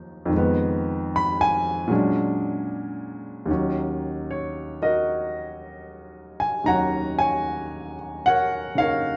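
Moody and smoky, this short cut from a longer solo jazz piece moves at 76 BPM in 4/4 with a swung eighth-note feel in Eb minor, slightly below standard pitch. A single grand piano carries everything from Eb2 to Cb6, sounding intimate, natural and up front, with the noise of its action audible and a moderate studio reverb around it. The harmony moves from Fm7b5 to Bb7alt before settling on Ebm7 at 3.5 seconds, where a new section begins and runs to the close at 9.2 seconds.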